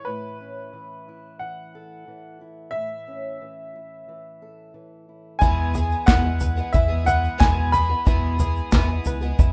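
This nostalgic, hopeful indie folk fragment opens with a bright upright piano carrying the melody up front, its worn, slightly detuned tone full of woody action noise and long sustain, over a fingerpicked steel-string acoustic guitar sitting low in the mix. At 5.4 seconds the arrangement builds as the harmony moves from A to E, and a band joins together. A shimmering, octave-doubled twelve-string guitar with a boxy parlour character adds picked accompaniment, while a twangy bluegrass banjo plays arpeggios in the background. Underneath, a deep, thick, saturated sub bass holds sustained notes, and an unplugged drum kit played with bundle sticks brings a punchy kick, medium-tuned snare and toms, along with a grainy, mellow tube shaker. A hollow group handclap sits in the background from 6.1 seconds, and the mix stays dry and rough, like a home demo.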